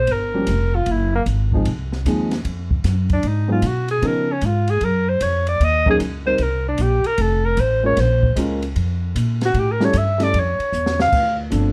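Moody and swinging, this brief excerpt cut from a longer small-group swing and bop piece moves at 152 BPM in 4/4 with a firm swing feel, centered in Bb minor. A breathy alto saxophone takes the solo from the start, its mellow subtone and scooped notes sitting up front with a touch of plate reverb, ranging from Bb3 up to F5. Underneath, a pizzicato upright bass on gut strings gives a woody, thumpy foundation, while a baby grand piano adds intimate accompaniment, its action noise audible in a natural sound. The open jazz drum kit, heard in a small room with dark cymbals, a medium-tuned snare and a punchy kick, draws on ride, hi-hat, crash, snare and kick and slips in a short fill at 10.7 seconds. The harmony wanders through shifting chords such as Gm7b5, Db13 and A7 before landing on Dm7 at 11.1 seconds, all within a dark, lightly reverberant production.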